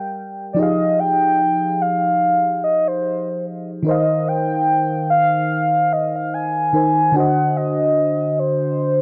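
A worn, warbling cassette-tape sound with light digital reverb frames this sensual, late-night R&B excerpt in F minor at 73 BPM with a swung sixteenth feel, as a round, full-bodied FM electric piano with chorus opens with a short fill before settling into chords from Fm9 through Ab6/Eb to D7b9, and a horn-like sawtooth synth lead, soft and sustained with vibrato, delay and chorus, sings the melody up front from 0.5 seconds.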